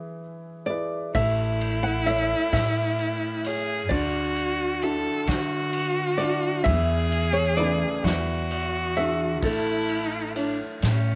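In a slow, straight 6/8 at 43 BPM counted in dotted quarters, this tender, heartfelt acoustic folk-pop ballad in A major opens with a fingerpicked nylon-string guitar carrying the melody, complete with finger squeak, over a woody, vintage upright piano with long sustain and audible action noise. From 1.1 s a distant, roomy drum kit played with bundle sticks adds a punchy kick, medium-tuned snare and dark ride cymbal, while a pizzicato upright bass and a clear, focused bowed cello with vibrato join just after, the cello sitting up front as a second line. A thick-felted, muted upright piano adds mellow arpeggios in the background in brief passages, all within light reverb and small-room ambience as the chords move from E through A, Dadd9 and E7 back to A in this excerpt cut from a longer piece.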